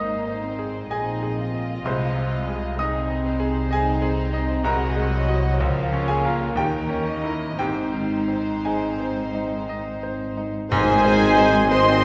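Passionate and lyrical, this romantic movement for piano and orchestra moves at a slow, rubato 3/4 in Ab major, around 56-65 BPM. A brilliant, polished grand piano carries the melody up front, joined by a floating violin section playing sul tasto. A darker, lush second violin line with vibrato, a pure viola section and an intimate cello section sit further back, while a close double bass section anchors the low end. The harmony passes from Ab through Ab/C, Ab7/C, Db6 and Eb7b9 before coming home to Ab, while soft-mallet timpani sound briefly at the start until 0.4 seconds. At 10.7 seconds a full-band accent opens a new section: a hollow, airy flute section, a bright oboe, a clear clarinet, a punchy bassoon, a smooth French horn section, a dark trombone section, a tuba and a faint tam-tam join the returning timpani, all very quiet or barely audible, while a roomy trumpet adds stabs in the background. 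The whole orchestra blooms in a wet recital-hall reverb, and this fragment of a longer piece ends at 12.0 seconds.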